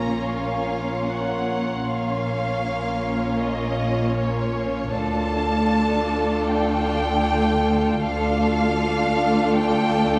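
A close, lush viola section carries the accompaniment in this mysterious, uneasy stretch of suspense film score, its soft-attack bowing marked by vibrato and expressive portamento. Above it, a warm violin section sings the melody with its own sliding, vibrato-rich phrasing, while a second, more distant violin section traces a smooth, even second line beneath. A high, focused violin texture hovers in the background until 4.5 s, and a glass harmonica holds glassy, ethereal chords whose slow attack and beating tones add a dark, otherworldly shimmer. The low end rests on a symphonic cello section sitting back in the mix and a double bass section with light vibrato and a smooth top, both bowed evenly. A faint electronic impact opens the cue and ends by 1.9 s, the harmony shifts from Bb minor to D minor at 4.9 s, and a recital-hall reverb wraps the ensemble in the air of a church or concert hall in this passage cut from a longer piece.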